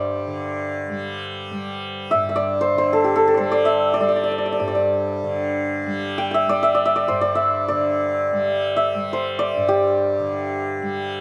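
Hindustani classical music in a meditative, serene mood, with a mellow, ringing, hammered santur carrying the melody up front over the softly plucked, buzzing drone of a tanpura, captured by close, detailed microphones with light reverb in a brief passage cut from a longer performance.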